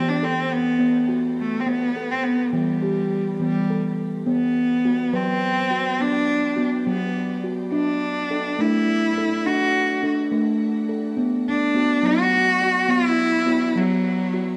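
A 6/8 pulse moves at 69 BPM counted in dotted quarters, with a straight feel that suits this meditative world piece built on tuned percussion. A steel tongue drum, struck with firm rubber mallets, plays arpeggios from E3 to B4 throughout, its round, pure tones ringing dark and smooth near the front. Alongside it, a single bowed cello carries the melody between F#3 and F#4, rich and expressive, with a soft attack, vibrato and portamento. Both instruments carry a shimmer reverb and sit in a wet plate space with a 2.6-second decay. The harmony drifts through E5, B5 and Em in the opening passage, then moves between B5 and D5 after 4.3 s, before returning to B5 at 11.2 s. The recording is cut from a longer piece, and the whole passage feels gentle and meditative.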